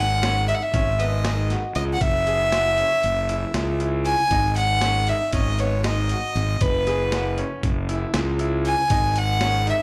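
Set in a straight 9/8 at 235 BPM counted in eighths, this driving, intricate progressive instrumental in G# minor puts a clear, biting, bowed solo violin melody with slapback echo up front over a growly, overdriven fuzz bass, while a brilliant grand piano plays short-sustained arpeggios in the background through slapback echo and digital delay, and a gritty, compressed sampler-style boom bap kit with a thumpy kick, high-tuned snare and hi-hat drives it along, all heard as a live gig through a club PA and moving between G#7(no3), F#5 and F#7sus4 chords.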